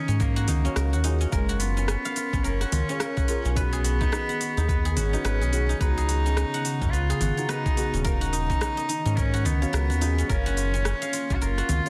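A swung 4/4 groove at 107 BPM drives this earthy organic downtempo piece in Eb minor, built on a gritty, thumpy electronic kick and an overdriven afro-pop kit of cabasa, congas, rim click and metallic hats, with a round, up-front analog bass pumping beneath. A bright, silvery guzheng plays ringing arpeggios through digital delay while a reedy, gut-string cello carries the melody over chords moving from Ebm7 through Gbmaj7, B6 and Db7sus4. In the background, a soft, decaying chord stab with phaser and a warbling, nostalgic lo-fi pad with slow attack both pump with sidechain compression, all sealed in light reverb and a dense, heavily limited master across this 11.9-second cut from a longer piece.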